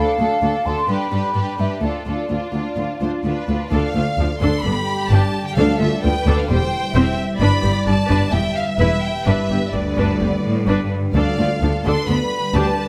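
Determined and swashbuckling, this heroic adventure film-score cut opens with lush, vibrato-rich violins carrying the melody over a second, more distant violin line, clear violas and a close, focused cello bass, while an airy small flute group adds a mellow counterline until 3.5 seconds, after which a ringing thumb-plucked harp murmurs arpeggios in the background, smooth double basses deepen the low end, and very quiet hard-mallet timpani strike articulate accents, all set in a moderate recital-hall reverb.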